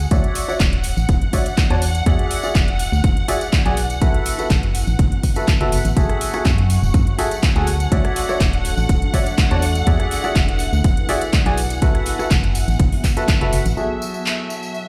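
This soulful, bittersweet piano house excerpt moves at 123 BPM in F# minor, tuned to A4 = 437 Hz, and opens on distant, lush violin-section chords, a hollow, organ-like FM bass, tape-warm house drums with metallic hats, handclaps and rim clicks, and a tambourine in the background, with strings and bass pumping to the sidechain. A punchy kick sits up front from 0.1 s as a bright, woody, slightly detuned upright piano plays a riff through a low-pass filter and digital delay, while a deep, moody sawtooth pad with chorus fades in from 0.9 s over a cycle of Dmaj9, E9, B7sus4 and F#m9. The band hits an accent at 13.3 s before landing on F#m9, and the mix rings in a large studio reverb that sounds like a big system playing in a bare room.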